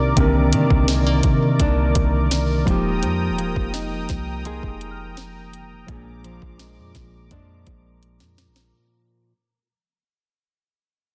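A smooth, tape-tinged R&B drum kit with a soft kick and sharp snare sets a straight 84 BPM groove under a round, dark 808-style bass in this late-night, sensual contemporary R&B excerpt, where a mellow, slightly out-of-tune tine electric piano with light overdrive, a full-bodied fingerpicked nylon-string guitar playing arpeggios and a detuned sawtooth pad with chorus carry the Cm9, Fm11 and Bb7 chords, a faint bell-like celesta with tape echo glints in the background at 4.5 seconds, and a drum fill arrives at 8.0 seconds as the passage fades out in a dense, heavily limited mix.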